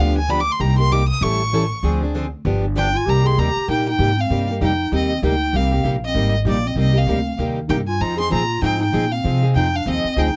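A clear, focused bowed violin carries the melody with vibrato from the start of this fiery, swinging gypsy jazz excerpt in C minor at 194 BPM, backed by two picked acoustic guitars and a woody, thumpy pizzicato upright bass sitting up front. At 2.8 seconds a breathy, whispered clarinet enters with a second line, its soft attack and scooped notes sounding distant and roomy, while one guitar stays boxy in the background with audible finger squeaks. The sound is dry and close-miked, with the chords moving from G7 through Cm7 and A7 before settling on Cm7 and Fm7.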